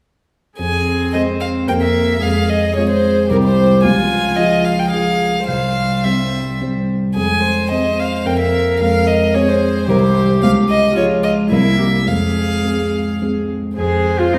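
A quick classical-period piano quartet movement in F minor at 110 BPM in 3/4, dramatic and urgent, in which a rich, up-front violin carries the melody with light vibrato and an airy sul tasto bow, a soft, floating cello sits in the background on a second line, and a dark, mellow concert grand with deep bass and long sustain plays alongside a pure, smooth-topped viola in accompaniment over chords moving between Fm, C and Db, all set in a wet recital hall heard from further back in the room.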